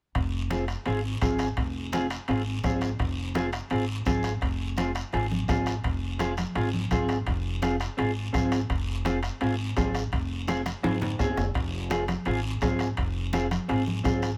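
A light reverb gives this danceable, fiery cumbia fragment a sense of space, with a woody, pizzicato upright bass and a dark, clean electric guitar carrying a lush chorus sitting up front over a steady Fm groove. Around them, a soft-beater bombo, ringing metal-shell timbales with a vintage, band-limited tone, medium-tuned congas tucked in the background and a raspy guiro keep the percussion bustling. A drum fill at 10.7 seconds leads into a return of the opening section at 11.6 seconds.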